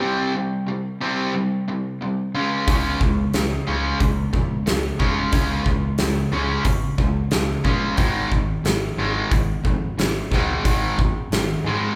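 Energetic and swaggering, this hard rock excerpt at 90 BPM in straight 4/4 opens with two picked, overdriven guitars playing a riff over C5, Db5 and Ab5 chords: a bright, up-front cranked stack guitar with spring reverb and a warm, hollow-bodied semi-hollow guitar. At 2.7 seconds a huge arena drum kit with a punchy kick, medium-tuned snare and hi-hat joins up front, while a growly picked electric bass sits in the background. The band plays live together in one large studio room with moderate reverb.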